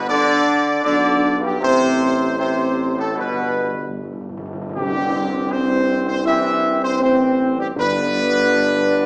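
A clear trumpet section sits up front and carries the melody of this solemn, regal classical fanfare, a short cut from a longer piece in C major moving at a stately 74-81 BPM in a straight 4/4. Beneath it, a clear trombone section with light vibrato and a vintage tone holds sustained chords alongside a dark, smooth-topped French horn section, while a dark solo tuba anchors the bass. The harmony moves from G through A minor and back to G before arriving on C at 4.8 seconds, where the ensemble strikes an accent and the passage opens into its second section. Calf-head timpani played with medium mallets enter at 3.2 seconds with a fill leading into that arrival, and a very quiet, dark tam-tam colors the music from 4.8 seconds. The whole is heard through a reverberant recital hall ambience and a small-speaker sound.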